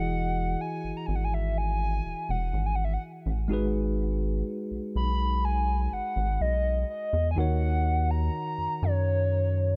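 Contemporary R&B at a slow 62 BPM in 4/4 with a straight feel, this short excerpt in G# minor carries a late-night, longing mood across its 9.8 seconds. A hollow, woody synth lead with a clarinet-like voice sings the melody up front, its soft, mellow tone shaded by chorus, phaser, delay and a touch of vibrato. Beneath it, a worn tine electric piano, slightly out of tune yet clean and direct, supplies the accompaniment. A rubbery square bass sits dark and bouncy at the front of the mix, its resonant filter pluck giving each note a fast attack before it sustains. The harmony moves from Emaj9 to G#m7 at 3.5 seconds and on to D#m7 at 7.4 seconds, all in a dry setting with little reverb.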